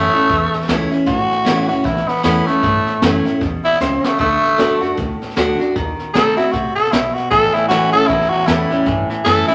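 A large studio reverb gives this rollicking, retro rockabilly excerpt a wet, roomy sheen, with a swung 4/4 feel throughout. Up front, a raspy tenor saxophone takes a gritty, pop-style solo with vibrato for the whole passage, backed by a full-bodied steel-string acoustic guitar picked with a fresh, bright ring. Beneath them, a woody, thumpy pizzicato upright bass sits in the background, while a jazz kit played with brushes adds a punchy kick and high-tuned snare, with a drum fill at 3.8 seconds. A clean, compressed electric guitar with a twangy edge joins in the background at 7.3 seconds with a riff. The harmony moves from A to D, passes through D#dim7, and lands back on A.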